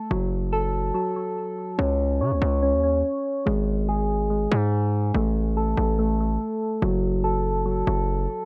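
Soft, round electric-piano-like synth keys open this brooding, eerie trap excerpt, playing arpeggios over an F#m chord with chorus, a low-pass filter and digital delay giving them a mellow, gentle glow. A distorted 808-style bass arrives at 0.1 seconds, heavy and aggressive, its saturated tone carrying a noise layer beneath a fast attack and decaying notes. The tempo sits at 143 BPM in 4/4 with a half-time feel, and the tuning rests slightly below standard at A4 = 439 Hz. After a brief break, the second section begins at 1.8 seconds, where a filter sweep colours the synth keys as the harmony moves to C#sus2 and later returns to F#m. Both the keys and the bass sit up front, framed by a light reverb that keeps the mood dark and hovering.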